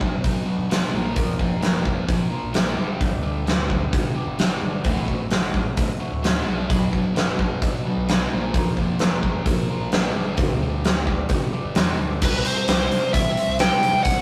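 A rough rehearsal-room recording with tube saturation and light reverb captures this cathartic, anthemic stretch of quiet-loud alternative rock in 4/4, cut from a longer piece. A big acoustic rock kit sits up front, its tight kick, medium-tuned snare, hi-hat and crash cymbal sounding in a big room with a rolled-off top. A thick, double-tracked fuzz guitar plays the riff over a growly, punchy overdriven bass. Meanwhile, a dark, slightly broken-up electric guitar through a small old amp plays phaser-tinged arpeggios in the background. The harmony cycles through Bm, Bb, G and D before turning to C at 12.2 seconds, where a bluesy overdriven lead guitar steps up front with a distorted melody that runs until 14.2 seconds.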